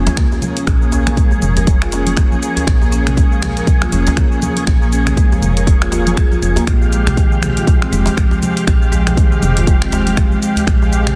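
Afro house with a warm, earthy mood, swung on the sixteenths, this short cut from a longer piece rides on a punchy, up-front electronic kick, a house kit of finger snaps, hi-hat, shaker and toms with soft clipping on the snare, and very quiet congas and a tight, cracking djembe with metal rattles. A soft, round FM bass, rosewood marimba arpeggios with delay, and floating sul tasto chamber strings holding sustained chords all pump against the kick, moving from Bbm7 to Fmadd9 at 6.7 seconds. Over them, a gritty overdriven tonewheel organ stabs through key click, chorus vibrato, a slow rotary speaker and delay, with a filter sweep running across the whole passage, all set in a small room under a dense, heavily limited master.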